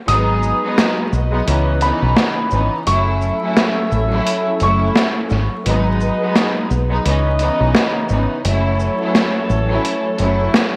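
Gritty, pitched-down sampler-style boom-bap drums with a high-tuned snare sit up front beside a round, foam-muted dub bass in this moody hip-hop excerpt, where a dark, woody upright piano melody with tape echo plays until 5.6 s over earthy bowed strings, lush background string chords and distant, roomy horn stabs, all coloured by spring reverb, cassette tape and vinyl crackle, with the kick muted from 8.4 s.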